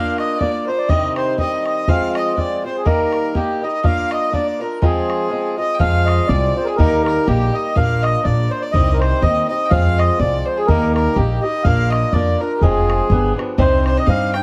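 A mellow, reedy accordion carries the melody up front, its close, full tone set in a plate reverb. This excerpt is a driving, dark and lively Celtic polka in 2/4 at 123 BPM, with a swung eighth-note feel in F dorian. A rich, smooth fiddle plays a second line alongside it, with light vibrato. A fingerpicked swing-style acoustic guitar gives a boxy, dark accompaniment, and an open, boomy bodhran with a compressed, saturated edge drives the percussion. After a brief break at 5.3 seconds, a woody, thumpy pizzicato upright bass joins up front at 5.8 seconds as the tune repeats, and the passage closes on a G7 resolving to Cmadd9 at 13.6 seconds.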